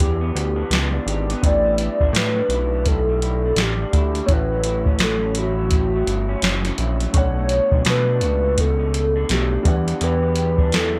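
A warbling, detuned lead carries the melody through this wistful, mellow bedroom-pop excerpt in B minor at 84 BPM, its analog chorus and slapback echo lending a nostalgic haze to the lightly swung 16th-note feel. Up front sit a soft vintage rhythm box with a deep kick, crisp snare and metallic hats, re-recorded in a large room, and a fat, thick sawtooth bass with a filter sweep. Beneath them, a slightly broken-up, lo-fi electric guitar with lush chorus and vibrato and a woody upright piano with cassette-tape colour trace Em7, A7sus4, F#m7/A and Bm7 before the return to Em7 at 9.7 seconds, under a light reverb.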